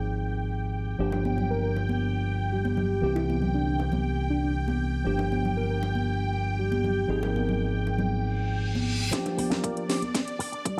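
Lightly reverberant and sleek, this groovy nu-disco excerpt opens on a worn, slightly out-of-tune tine electric piano with tape echo, a lush, detuned unison pad with chorus and phaser, and an up-front fingered bass through an envelope filter, all three pumping with sidechain. Saturated bongos and congas sit in the background, and a round, octave-layered synth lead with vibrato carries the melody from 1.5 seconds over chords of Ab6, Gm7 and C7. A reverse cymbal leads into a build-up at 9.1 seconds, where a punchy electronic kick and a house kit with cracking snare and metallic hats bring a drum fill, while filter sweeps pass over the lead and over a dark, clean, envelope-filtered electric guitar riff with 12-bit sampler grit.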